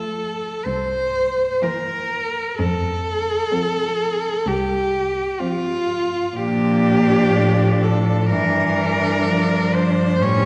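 Heard from further back in a reverberant scoring stage, this excerpt of a yearning, solemn classical piece for cello ensemble moves at a rubato 63 BPM in 4/4, with a close, focused solo cello singing the vibrato-laden melody up front over a second bowed cello line and a smooth-topped accompanying cello, while a distant, even bass cello enters at 0.7 seconds beneath rich harmonies that drift from F and C7 to Bbmaj7 and Em7b5/G.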